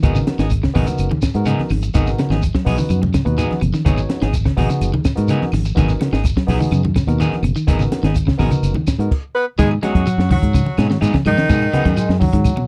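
A round, dark fingered electric bass sits up front in this funky, hypnotic afrobeat cut, taken from a longer piece in G# minor at 126 BPM in a straight 4/4 over a G#m7 chord. Around it, a compact cocktail drum kit with a punchy kick and high-tuned snare sounds smooth and rolled-off, while quiet, thick-skinned congas, a grainy shekere and woody claves in the background fill out the percussion. A bright, twangy electric guitar at the edge of break-up picks arpeggios in the background, a clean guitar adds picked stabs, and a barky, lightly overdriven tine electric piano comps until 9.1 s. At 9.3 s a clear, distant alto saxophone takes the melody with vibrato, joined by an edgy, punchy tenor saxophone on a second line, and a bright bass trombone with scooped notes enters at 11.7 s. The sound is a dry, close 1970s-style studio recording with light reverb.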